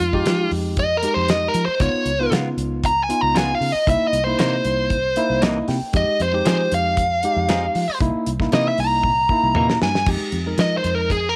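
Smoky and mournful, this straight-eighth soul blues fragment is led by a biting, overdriven lead guitar soloing up front over a bright tine electric piano heard through its built-in speakers, a round, foam-muted fingered bass and a damped 70s drum kit with a fat snare and tight kick. A clean, compressed electric guitar adds stabs in the background from 2.3 seconds, the electric piano slips in a fill at 4.9 seconds, and the drums play a fill from 9.0 seconds as the changes cycle back to the opening chord. Light studio reverb lends the dry kit a little space.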